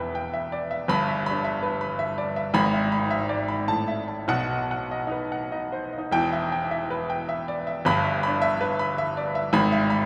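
The rhythm moves in a flexible, rubato 3/4, with the pulse pushing and pulling between 96 and 109 BPM. This stormy, agitated passage from a classical virtuoso piano study in E minor is cut from a longer piece and runs for 10.1 seconds. A solo grand piano carries the music throughout, ranging from a deep E1 up to B5, its tone clear and present with a short sustain, placed up front. The harmony stays close to home, moving from E minor through its first inversion to an E7 over G sharp, then to an open A chord and a B major, before returning to E minor and closing on E major over G sharp at 9.5 seconds. Captured in a church or concert hall, the piano sits in a wet cathedral reverb with a 4.5-second decay that lets each phrase bloom into the space.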